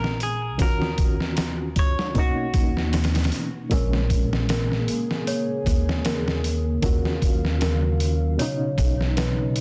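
A gritty, pitched-down sampler drum kit with a thumpy kick and medium-tuned snare sits up front in a 77 BPM, lightly swung 4/4 groove, joined by a woody pizzicato upright bass to set a dark, smoky trip hop mood in Bb phrygian. A barky, lightly overdriven electric piano with fast tremolo and tape echo carries the chords, while a bright, clean semi-hollow guitar plays a short echoed melody that ends at 3.3 s. A delicate, bell-like celesta with 12-bit grit enters with arpeggios at 3.7 s, and a warbling, nostalgic detuned pad with chorus and reverb fills in sustained chords from 4.6 s, all under a dense, heavily limited modern master.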